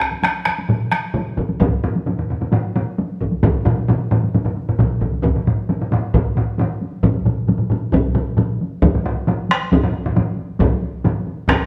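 A straight 4/4 pulse that speeds up throughout drives this powerful, ceremonial taiko drum ensemble piece, cut from a longer work and played live in one room under a large, wet studio reverb: one ensemble struck with heavy sticks sits in the background from the start, a second with hard sticks and a vintage, band-limited tone comes up front at 0.1 seconds, and two more up front with a small-room sound, one on heavy sticks and one on hard sticks, join at 1.4 and 1.6 seconds.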